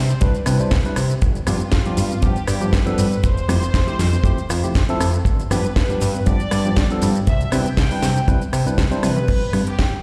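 A string section and a fat analog bass open this sunny, groovy nu-disco excerpt together. The violins carry the melody with light vibrato and a reedy, gut-string, period-style tone trailed by dub echo, while the thick, detuned bass sits up front and pumps against the sidechain. A dry, tight kick and a layered house kit with a cracking snare, metallic hats, rim clicks, shaker, toms and crash cymbal drive a lightly swung 4/4 groove, and a bright, barky tine electric piano adds accompaniment that also pumps and echoes. From 1.2 s, very quiet maracas, congas and bongos join with soft hands, as the chords move from Cmaj9 through G7 and Fmaj9 and back, landing on G just after a drum fill at 9.0 s. The whole mix sounds as if played on a big sound system in a bare room, wrapped in large studio reverb.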